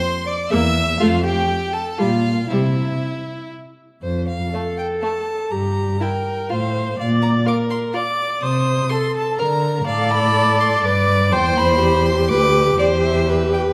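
A rich, focused first violin carries the melody high above the ensemble, its vibrato lending a smooth sheen to the top of its line in this lively, spirited classical-period movement for string quartet, heard as a cut from a longer piece. Beneath it, a second violin plays an even, polished second line, and both violins begin at the very start. The viola joins at 0.5 s with a mellow, focused accompaniment, alongside the cello, which supplies the bass with a soft attack, gliding portamento and an expressive, warm tone coloured by vibrato. The quick triple-metre pulse is shaped with a flexible rubato feel, and the music moves from an opening passage into a longer second section at 4.0 s. The quartet sits in a moderate recital-hall reverberation of about 1.8 s, and the recording carries some lossy compression artefacts.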